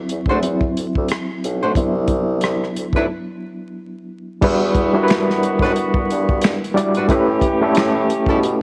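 A relaxed 90 BPM groove in 4/4 swings its sixteenths at 59%, driven by an up-front, dry acoustic soul kit with a tight kick, a medium-tuned snare, rim clicks, hi-hat, finger snaps and crash, all with a rolled-off top end. Underneath, a mellow bassoon carries the bass line in a classical style, with light vibrato and a distant, roomy placement. An overdriven reed electric piano, gritty and reedy through a combo amp with tremolo, takes the lead in the opening half of this smooth R&B and neo-soul excerpt, with a break arriving at 3.1 seconds. A fingerpicked flamenco guitar adds a second line, and at 4.4 seconds a dark, vintage horn section enters with tight, jazz-style stabs touched by light vibrato. The harmony moves from a rootless D7 to Cmaj9#11, then Em9 and A7, all set in a light small-room reverb with a bed of vinyl crackle.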